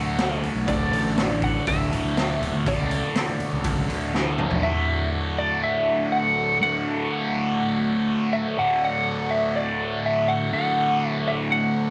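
A straight 4/4 pulse at 122 BPM drives this hypnotic, kaleidoscopic psychedelic rock passage in D major. A raw garage drum kit, boomy and gritty with a rolled-off top, joins fingered electric bass with fuzz and overdrive and barely audible low-tuned congas, until a drum fill brings all three to a stop at 4.6 seconds. Up front, a bright, double-tracked fuzz guitar grinds out a low riff through distortion and phaser, while a slightly broken-up lead guitar carries the melody through wah and tape echo, and a buzzy vintage combo organ holds sustained chords in the background, all set in moderate spring reverb with a 1.5-second tail.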